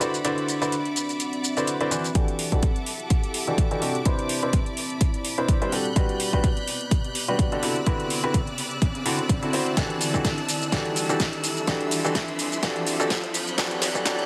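Swung sixteenths give this joyful, uplifting piano house excerpt its bounce, with a house drum kit of metallic hats, shaker and a cracking snare playing from the start. A punchy, tape-tinged electronic kick joins at 2.2 s, and from there the passage becomes a build-up as a filter sweep moves across the bright, brilliant baby grand piano riff. That piano sits up front with short sustain, carrying vintage 12-bit sampler grit, tape echo and sidechain pumping. Lush bowed strings hold sustained chords with vibrato and pump to the beat, while a deep, moody pad of detuned sawtooth and sine layers over a sub octave adds a dark, chorused haze. An electronic riser sits in the background from 4.8 s, and a drum fill drives the closing stretch as the chords cycle through D13, Em11, Cmaj9 and Gmaj7 in a light digital ambience.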